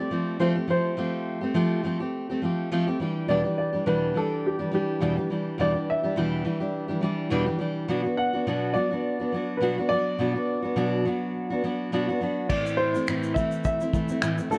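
A fingerpicked steel-string dreadnought guitar and a woody, polished upright piano open together, the piano carrying a tender melody over the guitar's accompaniment as the chords move from Fadd9 through Em7 to Bm in E minor. This reflective acoustic pop piece moves at 104 BPM with a light sixteenth-note swing, tuned slightly below standard pitch and set in moderate plate reverb. At 12.5 seconds, over an Am chord, a muffled, gritty, cloth-damped drum kit joins with kick, shaker, finger snaps and a dark crash before the clip cuts off at 14.6 seconds.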